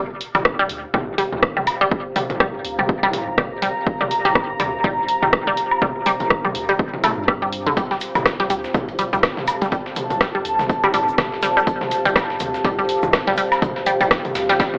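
Cool and quirky, this minimal techno excerpt moves at 123 BPM in G minor with a swung 16th feel, resting on a single Gm chord under an AM-radio tone and moderate studio reverb. A punchy, tape-warm electronic kick and a house kit of hi-hat and rim click sit up front alongside a juicy, squelchy blip pluck coloured by phaser, 12-bit sampler grit and dub echo. Electronic toms and woodblock carry tape echo, a mellow sine sub bass sits in the background, and a deep, moody pad with chorus and sidechain pumping adds texture. A gritty, high-passed sampler-style kit with snare and hats, plus a very quiet grainy egg shaker, arrives at 7.8 seconds.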